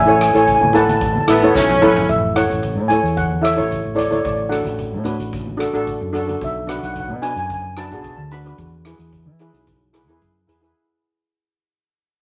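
A shimmering lead steel pan carries the melody over a second pan in double seconds, fingered electric bass, a street-band drum kit with a boomy kick and very quiet low-tuned congas in this festive, carefree calypso at 111 BPM in A major, where a punchy horn section cuts in briefly from 1.3 to 2.1 seconds alongside a drum fill before the piece fades out from 2.1 seconds.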